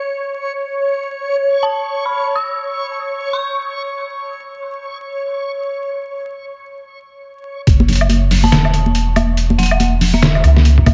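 A light digital ambience and a layer of vinyl crackle frame this heavy, dark deep dubstep cut, taken from a longer piece in F# minor at 141 BPM with a swung, half-time feel. It opens on a reversed, swelling texture, dreamy and detuned with a bright granular shimmer and its own reverb, sitting up front until 7.7 seconds. Over it, an eerie, inharmonic FM synth bell rings out in the upper register, its decaying notes smeared by chorus, phaser and dub echo, returning briefly after the drop. At 7.7 seconds the drop lands on an F#5 chord, bringing in a deep, round sub bass with a soft, sustained tone that stays up front. A thumpy electronic kick, struck as the drop lands and again at its close, joins a gritty, pitched-down sampler kit of hi-hat, snare and woodblock; both are compressed and re-recorded in a large room, and together they anchor the groove. Close, dry congas played with hard hands add acoustic percussion washed in dub echo through to the end at 10.9 seconds.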